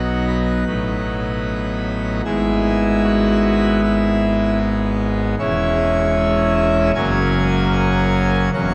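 A drenched church acoustic with a long reverb tail and a softened top end surrounds this brief majestic, reverent chorale-style fragment, lifted from a longer classical piece in steady 4/4. A solo pipe organ on full organ sits up front, its brilliant mixtures and baroque voicing spanning E1 to G#5 with audible chiff on the attacks. The harmony moves from B through B7/A, E/G# and C#m/E before arriving on F# at 7.0 seconds.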